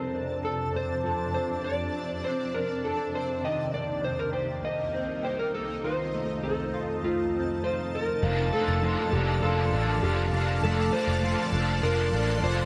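Set in a moderate plate reverb, this floating, blissful dream pop excerpt moves at 100 BPM in a straight 4/4 in F mixolydian. A slightly broken-up electric slide guitar carries the melody through digital delay, over a shimmering, ethereal ambient pad treated with chorus and phaser and dark, clean arpeggios from a mellow electric guitar. At 8.2 seconds the harmony moves from F6, Cm7 and F7 to Bbmaj7/F as a round, foam-muted vintage electric bass and a bright, crunchy overdriven guitar with harmonic tremolo arrive up front, while a very quiet, bell-like celesta adds delicate texture until 11.7 seconds.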